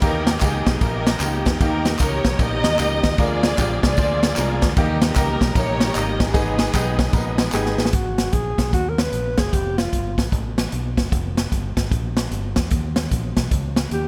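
Soulful and solemn, this uptempo gospel excerpt swings at 151 BPM in G# harmonic minor, opening with lush bowed strings carrying the melody through a tape echo over brilliant, woody upright piano, a very quiet organ with key click and slow rotary speaker, egg shaker with group handclaps, round fingered electric bass and a punchy, up-front big-band drum kit with dark cymbals. As a drum fill begins at 7.5 seconds, the strings, piano, organ and percussion fall away and a breathy, whispered alto saxophone takes the lead with soft subtone and light vibrato, while bass and drums continue. Light reverb surrounds the whole mix.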